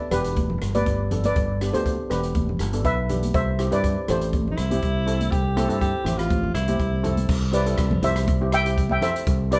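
The recording has the feel of a band playing live in one room, softened by a moderate studio reverb. This sunny, bouncy calypso fragment moves at 121 BPM in a straight 4/4 in C major, cut from a longer piece. A lead steel pan, shimmering and mellow under soft rubber sticks, carries the melody up front, while a second pan of double seconds, struck with medium rubber sticks, fills in the accompaniment beneath it. A growly, punchy fingered electric bass sits up front alongside an open jazz drum kit with dark cymbals, a boomy kick, hi-hat, rim clicks and crash, as high-tuned congas played with hard hands sound in the background. At 4.5 seconds a vibrato-laden alto saxophone in a pop style adds a short second line, dropping out at 7.2 seconds just as the harmony moves from G and C to a closing Cmaj7.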